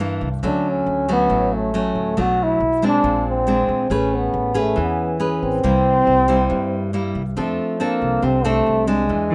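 A straight 4/4 bossa nova groove at 138 BPM sets a relaxed, sunny mood in this short cut from a longer piece. A bright, fingerpicked nylon-string guitar, complete with finger squeak, plays alongside a woody, dark pizzicato upright bass from the start, over chords moving from Dmaj7 through Bb9 and C7 to F6. A warm, roomy jazz trombone carries the solo melody with vibrato from 0.5 s, and a clear, bowed cello with smooth vibrato arrives just at 9.3 s, all within a rough home-demo mix with moderate studio reverb.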